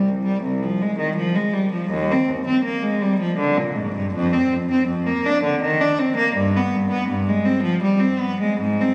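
A rubato 3/4 pulse around 82 BPM carries this grave, solemn baroque-style suite movement in C minor, where a single bowed cello plays alone up front from 0.0 to 8.9 seconds, its rich, focused tone shaded with vibrato and ranging from C2 to D4, all captured on a phone in a room awash with long cathedral reverb in a short cut from a longer piece.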